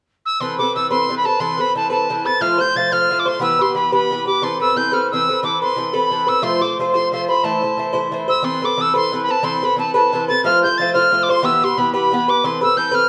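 A pure, bright tin whistle carries the melody high in its range, its soft chiff and vibrato sitting up front, in this spirited, driving Celtic folk excerpt in 6/8 at 119 BPM, in A minor, tuned to A4 = 437 Hz. Just behind it at 0.4 s, an Irish bouzouki picks its doubled strings with a metallic ring, moving through Amadd9, F, Em and Am. The whole phrase repeats from 8.4 s, and the two instruments are bathed in the wet reverb of a recital hall.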